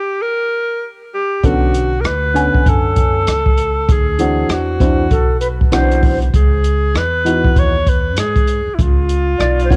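Swung sixteenths drive this smoky, mellow jazz-hop fragment, where a breathy, subtone alto saxophone carries the melody alone from 0.0 seconds, joined at 1.4 seconds by a dark, slightly detuned upright piano with audible action noise, a woody, thumpy pizzicato upright bass and an up-front open jazz drum kit with a boomy kick, hi-hat and rim click, before an airy concert flute with unsteady vibrato adds a second line at 5.1 seconds; the saxophone, piano, drums and flute carry cassette-tape grit, the two winds trail tape echo, and light reverb sets it all in a small, homespun room.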